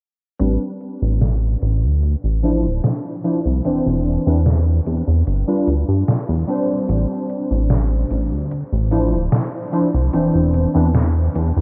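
Warbling lo-fi synth keys, mellow and nostalgic with lush chorus, vintage 12-bit sampler grit and diffuse delay, open this woozy, hazy vaporwave excerpt at 0.4 s beside a glossy, nasal chorused synth bass and a detuned 8-bit drum machine of hi-hat and snare, over a progression moving from Am11 through Dm9, Cmaj9/E and G7, all set in a dreamy low-pass-filtered mix soaked in huge reverb.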